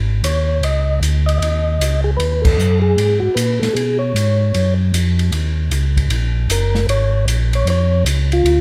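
Soul jazz organ trio at 154 BPM with a swung 4/4 feel, smoky and soulful, moving through Abm7, Ebm7 and Bb7 in a short cut from a longer piece. A mellow, round tonewheel organ carries the bass up front with light overdrive, chorus vibrato and slow rotary speaker from the start, joined at 0.2 seconds by a soft, flute-like percussive organ melody with key click and plate reverb, alongside an open acoustic jazz kit of dark cymbals and boomy kick in a small room. The band hits an accent together at 2.4 seconds, all set in light reverb.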